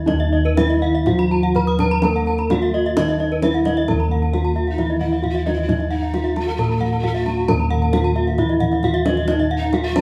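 A wet, roomy live sound carries this shimmering, brilliant Balinese gamelan excerpt in Eb pelog at 119-133 BPM, where a close-miked bronze metallophone carries the melody with paired-tuning beats over a softer wooden-mallet metallophone accompaniment in the background, two bright horn-mallet metallophones ring out arpeggios above, round, beating bossed gongs hold the bass up front, a deep, band-limited kendang adds soft-handed percussion, and a breathy bamboo pan flute with vibrato and chiff joins on a second line at 4.7 seconds.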